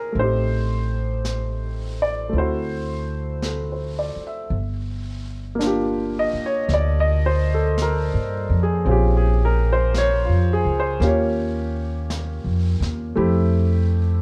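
A smoky, wistful jazz ballad in a slow, swung four, cut from a longer piece. A grand piano with a natural, up-front tone carries the accompaniment from the very start, joined at 0.2 seconds by a woody, pizzicato upright bass with steel strings, also placed close to the listener. A brushed jazz kit with an airy, polished studio-room sound and a high-tuned snare plays along on snare and hi-hat, sitting much further back in the mix. The harmony opens on Am7b5 moving to D7, then shifts at 4.5 seconds into a second passage that travels through Gm7, Bbm7 and Eb9 before settling on Fmaj9. Light reverb and the worn, warbling pitch drift of old cassette tape give the whole recording a faded, nostalgic haze.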